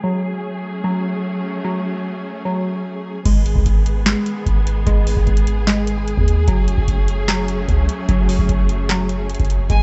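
Set at 149 BPM in 4/4 with a half-time feel, this brooding, hard-hitting trap excerpt cut from a longer piece opens on a dark symphonic string section holding sustained chords around F#madd9, joined by a glassy wavetable pluck spinning arpeggios through chorus and digital delay. The pluck has a crystalline, detuned edge with ring modulation and a moving notch, while the bowed strings sit lush and muffled under a low-pass filter with expressive vibrato. At 3.3 s the harmony shifts to G#m as a booming analog drum machine and a deep 808-style bass arrive; the drums sit up front, with a deep kick, crisp snare, handclaps, metallic hi-hats and a crash, their snare, clap and hats carrying a short room sound. The sine-based bass is boomy and dark, with a fast attack and a decaying tail under the beat. The chords return to F#madd9 at 6.5 s, and in the final moments a rich studio violin section touches a single high G#5. 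The mix is dry and dark overall, with its top end rolled off.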